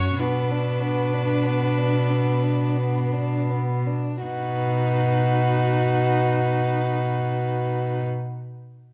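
Bathed in a large studio's lush reverb, this brief excerpt of a yearning, melancholic slow romantic movement for string quartet in 3/4 unfolds with rubato, easing back over its first 4.2 seconds before the harmony shifts from minor to major at 4.2 seconds, as an intimate, airy-bowed sul tasto first violin carries the melody over a dark, woody second violin line, a soft-attacked, closely heard viola accompaniment and a pure, floating cello bass sitting up front.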